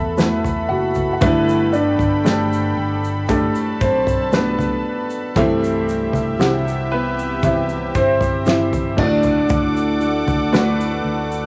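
This melancholic pop ballad moves at a slow, straight pace in four, carrying a heartbroken weight through its brief span, cut from a longer piece. A dark, mellow baby grand piano with long sustain carries the melody, colored by cassette tape grit and tape echo. Beneath it, a soft felt-muted upright piano with short sustain and thin felt supplies intimate accompaniment, while a smooth, detuned sawtooth pad with slow attack and chorus holds sustained chords up high. A very quiet, full-bodied jumbo steel-string acoustic guitar fingerpicks arpeggios, and a round, punchy fingered electric bass anchors the low end. A damped 70s drum kit, dry with a fat snare, tight kick, dark cymbals and toms, also run through cassette tape, plays from 0.2 to 10.8 seconds, joined from 0.2 seconds by a faint, grainy egg shaker, all within light reverb and the homespun air of a cassette recording with studio ambience, as the harmony drifts through Asus2, Gadd9, C and D.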